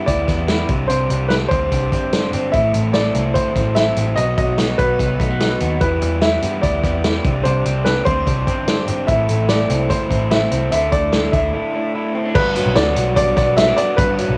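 A woody, slightly detuned upright piano with audible action noise carries the melody in this bittersweet, restless jangly indie pop excerpt at 147 BPM, its cassette tape coloring shared by a raw, overdriven garage guitar and a slightly broken-up, lo-fi electric guitar playing arpeggios through a small old amp. Underneath, a foam-muted, round picked electric bass and a punchy vintage drum kit with dark cymbals and a rolled-off top move through Em, Csus2, Am and B, then Em, Csus2, Am and Dsus2 before a break at 11.5 seconds. The music then lands on Gmaj7 at 12.3 seconds, wrapped in light reverb and the ambience of a small room on a home cassette recording.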